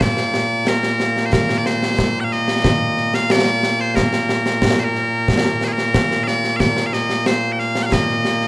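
Heard in a moderate recital-hall reverb, this ceremonial, stirring fragment of Scottish traditional pipe music in Bb major at 91 BPM puts loud, bright, piercing bagpipes up front with a continuous solo melody throughout its 8.5 seconds, while an acoustic concert snare drum and concert bass drum, also up front, keep a straight 4/4 beneath them all the way through, as a new section arrives at 6.6 seconds.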